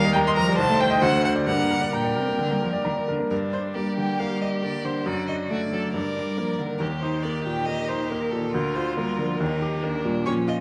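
A wet recital-hall reverb surrounds this spirited, lively fragment of a quick classical-period movement for piano quartet, played in 4/4 with a rubato feel. A distant, rich violin carries the expressive melody with vibrato and portamento, while a clear, even second violin and a focused cello with a smooth top add bowed supporting lines. An up-front, brilliant baby grand piano gives polished, short-sustained accompaniment with audible action noise, and the music moves into a new section at 3.3 seconds before the clip ends at 10.6 seconds.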